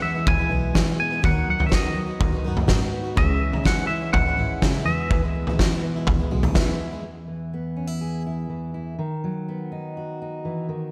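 A twangy, scooped electric guitar carries the melody in this nostalgic indie folk excerpt, its clean picked line coloured by tremolo, slapback echo and digital delay until about 6.5 seconds. It moves at 124 BPM in a straight 4/4 through E major, with chords passing from E to B/D# and C#m. A fingerpicked dreadnought acoustic with fresh strings gives a full-bodied accompaniment, finger squeak and all, while a bright, boxy plugged-in acoustic is picked in a swing style with its own slapback echo. Underneath, a bowed double bass sits in the background, smooth and even with vibrato. A loose, roomy drum kit sits up front with a fat snare, a punchy kick, toms and a rolled-off top. The other parts drop away around 7 seconds, and the fingerpicked acoustic continues alone to 10.9 seconds under light reverb and studio ambience.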